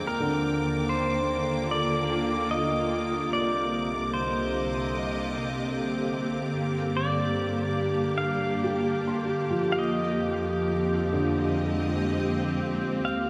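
A wet concert-hall reverb bathes this short, serene ambient excerpt, cut from a longer piece, in a peaceful glow. Up front, a clear, lush symphonic string section holds smooth, even bowed chords with vibrato, moving through Ebmaj7, Cmadd9, Gm and Fm7. Beneath it, a calm, organ-like drone built from detuned sine tones sustains with a slow attack and long release, softened further by ensemble chorus and its own reverb. A felt-muted upright piano sits in the background, playing mellow, intimate arpeggios with audible action noise and tape echo. A clean electric pedal steel guitar carries the twangy melody with fingerpicks, slide and volume swells, also treated with tape echo. A rich, focused bowed double bass section fades in underneath, while a bright, intense violin section holds a high texture that fades out across the 13.3 seconds.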